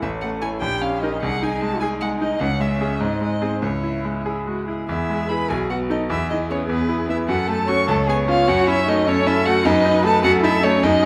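Urgent and restless, this quick classical-period movement for piano quartet in six-eight metre sets a muted violin melody, veiled and dark with vibrato and a distant quality, above a con sordino cello second line with a soft attack and smooth top. A brilliant grand piano sits up front with short sustain, carrying the accompaniment alongside a shadowy muted viola, whose portamento and gentle attack stay in the background. Close, detailed microphones capture the players in a moderate recital hall reverb, and the music moves into a new section at 4.9 s in this fragment cut from a longer piece.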